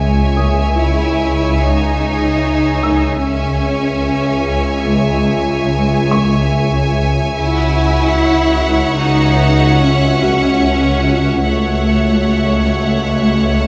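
Eerie and tense, this cinematic suspense cue, cut from a longer piece in C# minor at 73 BPM in 5/4, sets a clear, vibrato-laden violin section's melody over a distant second violin line, ethereal glass harmonica chords in the background, lush cello and focused double bass sections, and a swarming, detuned granular drone on C#2, while a soft felt-muted upright piano with audible action noise adds very quiet texture from 0.4 seconds as the harmony moves from C#m to F#m7/C# in a moderate recital hall reverb.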